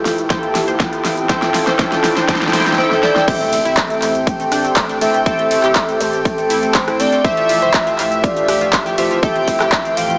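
Driving and bittersweet, this progressive house excerpt in A minor at 121 BPM opens with a build-up of drum fills, a background riser and a filter sweep on the glossy, retro polysynth stabs, layered over a lush, detuned pad, warbling analog pluck arpeggios and a punchy, overdriven electronic kick alongside a big-room kit with a huge snare and metallic hats, with sidechain pumping on the pad, stabs, pluck and the kit's hats, percussion and cymbals. A soft, octave-layered lead with chorus, tremolo and vibrato carries a dark, round melody from 2.8 seconds, and at 3.3 seconds the drop lands with an impact as a deep, thick sub bass settles in the background, the chords moving from Fmaj9/A to Am7 and then Fmaj9. A moderate hall reverb and a small-speaker character color the mix, with cassette tape texture on the stabs, pluck and lead.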